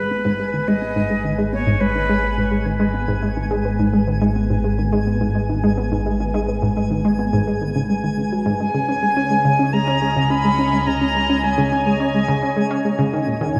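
Mysterious and expansive, this excerpt of sequencer-driven ambient space music moves at 106 BPM in G# minor, with an up-front, round analog pluck riff under chorus and analog delay, and a fat, saturated analog bass beneath. A sweeping, full-bodied resonant pad fades in across the whole span, holding chords that shift from G#madd9 to C#sus2 at 8.6 seconds, while a faint twinkling granular texture adds an octave-up shimmer from 0.2 seconds and a filter sweep runs throughout. A breathy, unsteady concert flute carries the melody with analog delay in two phrases, the second beginning at 8.6 seconds, all set in an echo-heavy mix with a wet plate reverb.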